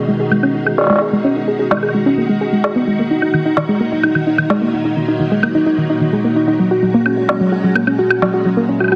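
Heavily compressed with a radio-like sound and a moderate plate reverb, this eerie, cerebral IDM excerpt pairs a silky vintage string machine's slow-swelling sustained chords and ensemble chorus with a soft, round, full-bodied pluck whose chorused, delayed arpeggios carry a filter sweep throughout, while electronic woodblock and a woody, filtered snare enter at 0.3 seconds over a G#m, D#m and F#add9 progression.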